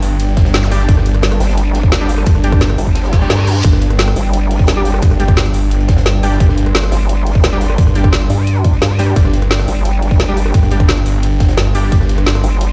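A straight 4/4 drum and bass groove at 174 BPM drives this dark, mechanical excerpt, with a tight, up-front electronic kick entering at 0.4 seconds over a layered kit of woody snare, metallic hats and rim clicks, while a very quiet, gritty breakbeat kit with a high-tuned snare and rolled-off top sits beneath. A snarling, distorted saw bass growls on G1 from the start, joined at 1.4 seconds by a nasal, vowel-sweep wobble bass with chorus, as a deep, moody analog pad sustains chords under sidechain pumping. Bold, bright orchestra-hit-like stabs with dub echo sit in the background alongside an electronic zap and a reverse cymbal at 3.1 seconds, all heard in a dry mix played back through a big sound system in a bare stone room.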